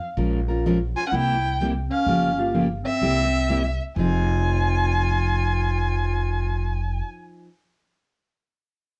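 Acoustic string swing in the gypsy-jazz manner, fiery and virtuosic at 127 BPM in F minor, with a bright picked steel-string acoustic guitar and a woody, thumpy upright bass entering at 0.2 seconds, a dark, expressive bowed violin with vibrato and portamento carrying the melody up front alongside a punchy, vintage-toned clarinet second line from 1.0 seconds, chords moving from Bbm7 through C7 and Gm7b5 to Fm7, all under light reverb and the warbling pitch drift of worn cassette tape in this brief cut from a longer piece.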